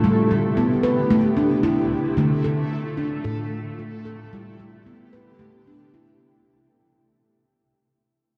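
Hypnotic and gentle, this short excerpt of meditative world music, cut from a longer piece, moves at 112 BPM in 4/4 with a light 16th-note swing. A handpan carries the music in arpeggios spanning A2 to B4, its nitrided steel ringing with a mellow, airy tone under soft fingertips and sitting up front in the mix. Alongside it, a granular cloud pad holds sustained chords around A3. Its bright, detuned triangle voice is blurred and evolving, with a slow attack, long release and a shimmer reverb on top of its own built-in reverb. The harmony circles through G, Am, Dm and back to Am and G, giving the passage a calm, cyclical pull. The whole excerpt sits in a wet echo chamber with a 2.0-second decay and a dark production. Both parts play from the start to 6.5 seconds, with a fade-out running across the entire excerpt.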